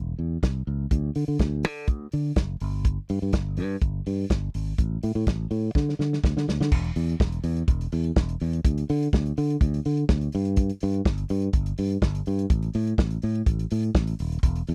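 A fingered electric bass opens this driving, danceable disco excerpt at 124 BPM, bright and growly up front, joined at 0.4 seconds by a dark, smooth soul drum kit with a tight kick, medium-tuned snare, hi-hat and crash, whose fill from 5.7 to 6.7 seconds leads into a new section, all captured in a dry, close 1970s-style studio sound.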